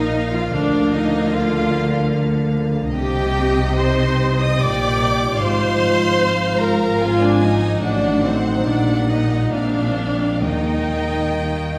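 Classical, a slow romantic orchestral movement in three, unfolding with lyrical, warm rubato, cut from a longer piece and set back in a wet, reverberant scoring stage. Two rich, expressive violin sections carry the melody and a second line over an up-front, focused viola accompaniment, while smooth cellos and soft-attack double basses hold the bass, dark distant horns sustain chords, and a ringing harp plays arpeggios in the background. The harmony drifts through a diminished chord toward a settling close, where dry, close timpani enter at 10.4 seconds.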